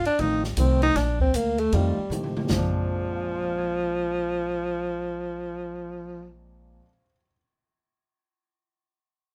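Small-group swing and bop jazz with a sophisticated, swinging mood, cut from a longer piece, led by an up-front tenor saxophone whose mellow, smooth-topped solo line carries vibrato and scooped notes over pizzicato upright bass with a woody, steel-string sound. An airy, polished acoustic drum kit with dark cymbals and a boomy kick plays a fill at 2.1 seconds and stops at 2.6, while a dusky grand piano supplies accompaniment until 7.4 seconds. The small group sits in light reverb.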